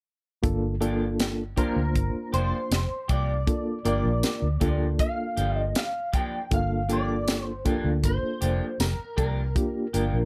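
Straight-eighth soul blues in G minor at 79 BPM, this brooding, mournful fragment is cut from a longer piece and rests on a single Gm7 chord throughout its roughly ten seconds. A reedy, clean electric piano with fast tremolo sits up front from 0.4 seconds, heard through its built-in speakers, alongside a dark, round, punchy fingered electric bass with a foam-muted, vintage tone. The tight funk drum kit is dry and up front, with a high-tuned snare, tight kick, hi-hat and tambourine. At 0.8 seconds a slightly broken-up electric guitar through a small old amp adds picked stabs coated in lush chorus. From 1.6 seconds a second guitar at the edge of break-up carries the melody, compressed and picked, with analog chorus giving it a gently shimmering edge over the light reverb.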